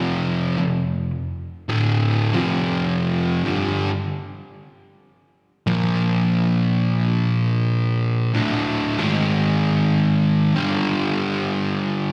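Heard through a venue's PA in a recital-hall reverb, this short cut from a longer live metal piece has an ominous, sludgy weight. A lone electric guitar sits up front, its picked fuzz distorted, compressed and double-tracked. It moves through heavy power chords with a slow, swung lilt, shifting from F5 and Bb5 to a second passage at 8.3 seconds that runs through D5, G#5 and G5 before the excerpt breaks off at 12.1 seconds.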